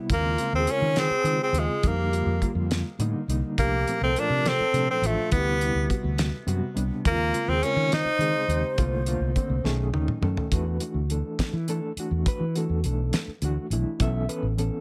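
Intense and driving, this electric jazz fusion excerpt in 6/8 sets a bright, up-front tenor saxophone melody with vibrato over a gritty overdriven electric piano with fast tremolo, a round fretless bass, a dry 70s drum kit with a fat snare and tight kick, and a hollow, airy flute line in the background, with the saxophone stopping at 8.8 seconds and a drum fill at 9.7 seconds leading into a new section over shifting suspended chords.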